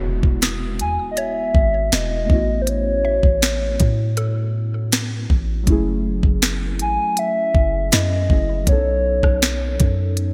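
A background impact opens this late-night, sensual contemporary R&B excerpt alongside muted, dark synth keys with chorus and phaser and a deep, boomy 808-style bass, before a trap kit with knocking kick, sharp snare, crisp hats and gated reverb arrives at 0.2 s, a round, mallet-like pluck with delay sits in the background, and a hollow, woody clarinet-like synth lead with vibrato carries the melody from 0.8 s over Emaj7, A69, F#m9 and B9 chords in a bright 1980s-style digital production.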